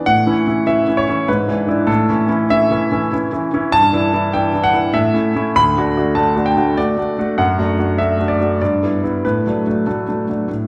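A classical-period piano sonatina in 3/4 at 98 BPM, this short excerpt from a longer piece has a playful, graceful character. A solo grand piano plays throughout the 10.7 seconds, spanning D2 to B5 with a clear, polished tone that sits up front and feels intimate, its audible action noise adding a close, tactile presence. The music opens in A major, moving through E7/G# and back to A before shifting toward D major from 3.7 s. Chords such as Em7/G, D/F# and D/A shape the phrase as it settles into the new key. The piano is wrapped in a wet recital-hall reverb with a 1.6-second decay, giving it the resonance of a church or concert hall.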